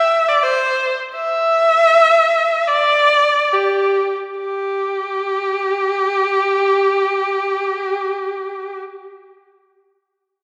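A wet, spacious reverb fills this recording, which sounds as if it were captured in a church or concert hall, with a two-second decay hanging around the single instrument. This is a short passage cut from a longer piece of Chinese traditional music in free time, its mood at once festive and pastoral. A lone bowed erhu carries the melody from 0.0 to 8.8 seconds, ranging from G4 up to E5, its tone clear and focused and placed up front despite a distant quality. The player colours the line with vibrato and sliding portamento between notes. The opening phrase slows down through its first 4.4 seconds before a second phrase takes over and runs to 8.0 seconds.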